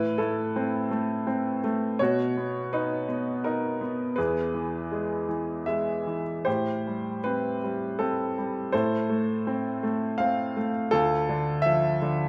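In a rubato 3/4 at 82 BPM, this lyrical classical piece in A minor unfolds as a reflective, melancholic solo for a baby grand piano, tuned to A4 = 441 Hz. The piano sits up front with a bright, brilliant tone and long sustain, ranging from D2 to F5 as the harmony moves through Am, B, E, Am7 and back to Am before settling on Dm at 10.9 seconds. A moderate recital hall reverb surrounds the instrument in this 12.3-second passage cut from a longer work.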